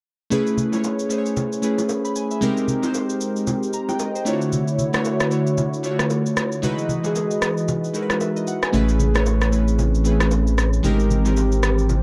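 A relaxed amapiano groove at 114 BPM in 4/4 swings its sixteenths, carried by an electronic shaker and rim click that carry a gritty, vintage 12-bit sampler edge and a small-room character. Congas and bongos played with soft hands sit lower in the mix, sounding bright, compressed and saturated. Up front, glassy digital keys with a fast attack and decaying tone provide accompaniment in A major under a filter sweep and chorus, while a smooth, evolving sawtooth pad with detuned voices, a soft attack and long release sustains mellow harmony beneath them. The progression moves through Amaj9, G#maj9, Dmaj9 and Emaj9 before returning to Amaj9 and G#maj9. At 8.7 seconds a deep, thick saturated sub bass arrives up front and holds through to 12.0 seconds, adding weight to this short cut from a longer piece. Light reverb and digital ambience give the dark, warm production a calm, easygoing mood.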